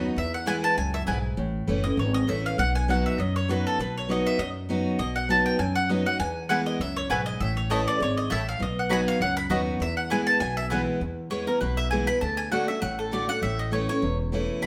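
Picked steel-string acoustic guitar and a growly, thumpy pizzicato upright bass open this joyful, driving swung bluegrass excerpt. A warm, double-stringed mandolin then carries the melody until 10.7 seconds, while a second woody mandolin adds stabs and takes a solo from 11.0 seconds, all as a live band in a stone room with moderate reverb.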